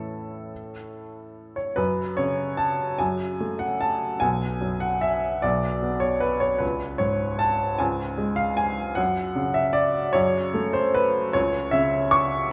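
A clear, woody upright piano carries this graceful classical waltz alone, sitting intimate and up front with its action noise plainly audible and a long sustain on each note. The music is in F# minor and moves in 3/4 at roughly 138 to 160 BPM, with a rubato feel that gives the phrasing an elegant give and take. The piano spans from B1 up to C#6. After a brief opening on A, the main passage begins at 1.8 seconds on F# minor and moves through B minor and a C#5 chord before returning to F# minor and ending on a rootless A over C#. A generous scoring-stage reverb with a 2.1-second decay surrounds the instrument, and the 12.5-second passage is cut from a longer piece.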